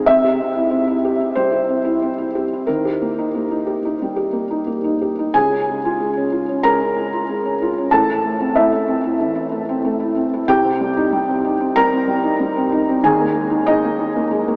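A rubato pulse around 94 BPM in 4/4 drifts freely through this short neoclassical minimalist piano excerpt, wistful and melancholic in mood. A felt-muted upright piano plays alone from 0.0 to 14.6 s, its tone soft, mellow and intimate, sitting up front and ranging from A1 to Bb5. The harmony moves from C to Eb, then shifts at 5.3 s into a second section that passes through Db, Am and Cm before resting on Ebsus4. The piano is slightly detuned from standard pitch, tuned to A4 = 439 Hz. A huge, wet reverb with an 8.0-second tail places it in a vast, echoing space, while an AM radio coloring shapes the overall sound. The passage is cut from a longer piece.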